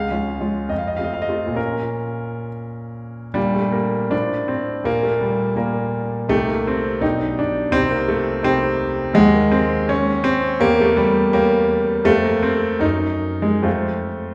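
Heard from further back in a recital hall with a long, wet reverb, this stormy yet bittersweet romantic character piece for solo concert grand piano, cut from a longer work, moves in a rubato 2/4 at around 65-85 BPM, its clear, intimate tone carrying deep bass and audible action noise as it turns from B-flat minor to B-flat major at 3.4 s and wanders through darker harmonies, including an E diminished seventh chord at 10.6 s, before settling on F.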